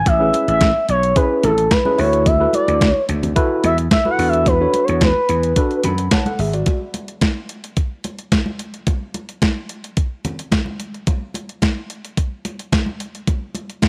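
A crisp, thumpy 8-bit drum machine with overdrive and bright, thin-skinned congas in the background set a straight 109 BPM groove in 4/4 for this smooth, feel-good slice of early-eighties boogie funk, alongside a growly, punchy slap bass up front. Over chords of Amaj9, D69 and E9sus4, a dark sawtooth lead with a soft attack sings an expressive solo full of portamento, vibrato and chorus, while a worn, slightly out-of-tune tine electric piano with light overdrive adds accompaniment and a short fill near the 5.6-second mark. After 6.7 seconds the harmony drops away and the drums and congas carry on alone in light reverb until 13.9 seconds.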